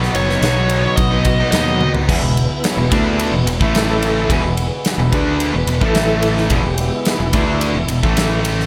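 A lightly reverberant, sunny and confident classic rock excerpt in E major at 108 BPM opens with a dark, wah-and-delay-tinged lead guitar line over up-front, punchy arena drums with bright cymbals, a growling overdriven fingered bass, a tight distorted guitar riff and two crunchy guitar riffs, with a very quiet shimmering twelve-string acoustic guitar and a woody upright piano beneath, until a drum fill at 1.8 s gives way at 2.1 s to a solo from the fast-rotary, lightly overdriven tonewheel organ over chords moving between E and A5.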